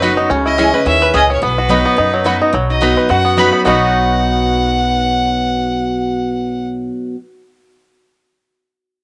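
Driving and swung at 214 BPM in 4/4, this rustic bluegrass excerpt in B major puts a clear, intense bowed fiddle up front on the melody over a full-bodied picked dreadnought guitar, twangy fingerpicked banjo arpeggios, background mandolin stabs on double strings and a thumpy pizzicato upright bass, all in a small room on home cassette tape, as the harmony moves early on from C#m to B, and a metallic, nasal lap resonator slide guitar adds a second line from 2.7 seconds.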